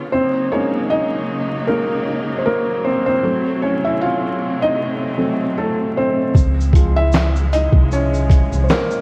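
Lo-fi hip hop at 77 BPM in Db major with a cosy, mellow swing, this fragment of a longer piece centres on a soft, intimate felt-muted upright piano with cassette-tape character playing solo throughout over distant, lush bowed strings with vibrato and portamento, until at 6.3 seconds a woody, dark pizzicato upright bass and a muffled, compressed sampler-style drum kit join, the kit bringing a thumpy kick, snare, handclaps, hi-hat, shaker and gritty 12-bit texture, with vinyl crackle and light small-room reverb surrounding the sound.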